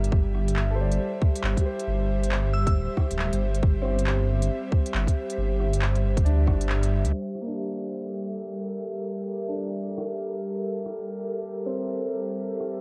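A breathy, softly warbling pad and a bright, woody upright piano open this rainy, wistful excerpt of future garage, the pad's sustained chords sitting up front as the piano carries the accompaniment through sidechain pumping, low-pass filtering and analog delay. Underneath, a dark detuned saw bass rumbles deep with a beating edge, and a tight, layered electronic kick drives the 137 BPM pulse with a swung sixteenth-note feel in G dorian, while an organic drum kit adds crisp hats, handclaps and rim clicks with a tape-toned, small-room character. At 2.5 seconds a glassy, crystalline synth bell chimes a single brief high note, coloured by chorus, phaser and delay. The kick falls away at 6.6 seconds, just before a band accent at 6.7 seconds, and at 7.1 seconds the bass also drops out as the harmony moves from Am7 to Gm69. From there, filter sweeps wash over the drums and piano, leaving the pad and filtered textures to float in a dark, warm production with light reverb and digital ambience.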